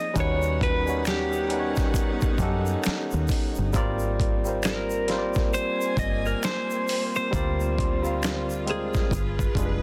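Sultry and smooth, this short excerpt of R&B and neo-soul moves at a slow 67 BPM in 4/4 with a 16th-note swing. A clean, picked electric guitar carries the melody with phaser and slapback echo, while a bright, barky tine electric piano, lightly overdriven through a combo amp, sits up front as accompaniment. A clear, lush studio string section holds bowed chords with vibrato underneath. At 0.2 seconds a gritty, sampler-style drum kit arrives with a thumpy kick and medium-tuned snare, joined by a round, punchy, foam-muted dub bass and a soft egg shaker with handclaps. The harmony moves from Eb7alt to Abmaj9, then Dm7b5 and G7b9, all set in digital ambience with a dense, heavily limited modern master.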